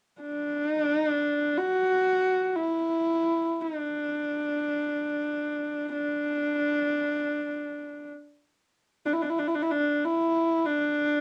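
Mongolian traditional folk music in free time, this short passage is cut from a longer piece and carries a proud, galloping mood. A single horsehead fiddle plays solo from 0.2 seconds to the close at 11.2 seconds, its bowed horsehair strings producing an earthy, husky tone set up front. The player adds light vibrato and portamento while staying within a narrow span from D4 to F#4, in a D gong mode tuned to A4 = 441 Hz. Recorded at home on cassette, the fiddle carries a tape coloring and sits in a small room with moderate ambience.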